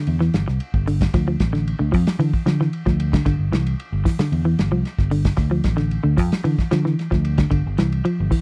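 A straight 4/4 afrobeat groove at 113 BPM sets a joyful, hypnotic mood in this short excerpt, with a fingered electric bass that sounds round and punchy and a soul drum kit of hi-hat, kick, snare and ride, its dark cymbals and tight kick sitting up front in a small room. A clean, picked electric guitar plays arpeggios in a narrow register from D3 to F3, moving through G5, Dmadd9, Gsus4 and G7sus4. The whole thing has a dry, close 1970s-style studio sound with little reverb.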